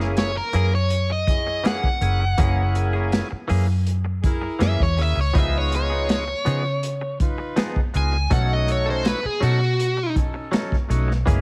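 The recording has a close, small-room sound with light reverb, and the drums, bass and lead guitar sit up front. It is a short cut from a straight-eighth soul blues in F# mixolydian at 81 BPM, swaggering and soulful, moving from F#9 to C#9 at 5.4 seconds and B9 at 8.3 seconds. A biting, overdriven lead guitar carries the melody from 0.2 to 10.1 seconds over a crunchy breakbeat kit with a punchy kick, a medium-tuned snare, hi-hat and a dark, rolled-off top. A vintage muted fingered bass adds a round, foam-muted low end. A gritty tonewheel organ, thick and overdriven through a slow rotary speaker, fills in the accompaniment while a twangy, direct-recorded clean guitar adds bright, compressed stabs. Underneath, a very quiet horn section holds smooth sustained chords with light vibrato.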